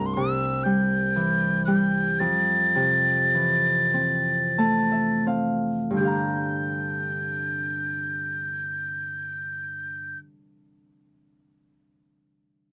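Celtic folk slow air in 6/8 and G dorian, played rubato at a slow 26-41 BPM with a longing, haunting mood, in a short excerpt cut from a longer piece. A breathy, mellow metal whistle carries the melody up front, its tongued notes marked by chiff and vibrato, while a fingerpicked acoustic Celtic harp rings beside it, moving from C to Fmaj7. The opening slows down as the harp adds a fill from 3.9 s, and at 6.0 s a new section settles onto Gm7, all in a dark, warm production with light reverb.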